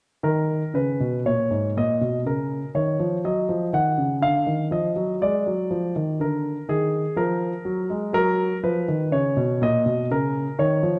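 A solo concert grand piano opens at 0.2 seconds, playing a baroque-style suite movement in a flowing, introspective mood. The rubato feel lets the phrases breathe unhurriedly, and the piano moves through a range from its low register up into the upper middle. Its tone is warm, with a deep bass and a short sustain, and it sits up front in the mix. A moderate recital hall reverb surrounds the instrument, and the dark production gives the whole recording a shadowed, inward character. This brief passage, cut from a longer piece, ends at 11.0 seconds, returning to the harmony it began on.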